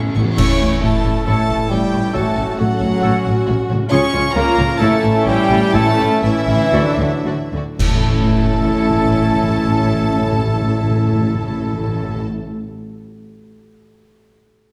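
Adventurous and heroic, this cinematic film-score excerpt moves in a straight 4/4 somewhere between 108 and 137 BPM in A mixolydian, easing back in tempo from 3.0 to 7.8 seconds. A chamber violin section carries the melody with a soft, sul tasto intimacy and light vibrato, while a symphonic violin section, oboe, clarinet and a very quiet, airy silver flute add second lines in the background. Mellow French horns hold sustained chords, joined by a tight trombone section, with a distant, roomy trumpet adding stabs and a dark, very quiet viola section filling in accompaniment from 1.3 seconds. Lush cello and double bass sections anchor the bass, a ringing harp spins gentle arpeggios, and calf-headed timpani open with a fill before dropping out between 2.8 and 5.7 seconds. Clash cymbals and bass drum with dark cymbals punctuate full-band accents at 0.4 and 7.8 seconds, the second marking the shift into a new section as the harmony returns to A. 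A generous scoring-stage reverb wraps the orchestra in a broad, cinematic space.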